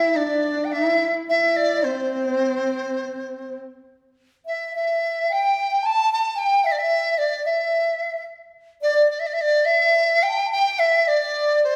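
Chinese traditional chamber music, festive and graceful, moves with a loose rubato feel in this passage cut from a longer piece. The large dizi carries the melody up front with a buzzing membrane tone, crisp attack and vibrato, and the low xiao plays a bright, reedy second line set in the background. A husky bowed horsehead fiddle adds its own vibrato and portamento beneath them until 3.6 s, all within a reverberant recital hall.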